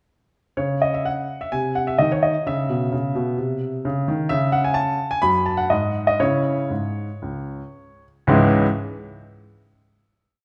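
A clear baby grand piano carries this short classical-period sonatina alone, playing a single-line melody over an independent bass line that moves in counterpoint beneath it. The mood is dramatic and restless, and the rubato feel lets the time bend freely from the first notes at 0.6 seconds. Diminished and minor harmonies darken the opening, and a passing major chord brings a brief shift of colour. From 3.4 seconds the music gradually slows, easing toward a final chord at 8.3 seconds that rings into the hall. The piano sits up front with a polished, present tone, while a wet recital-hall reverb surrounds it and lets the last sound linger after the playing ends.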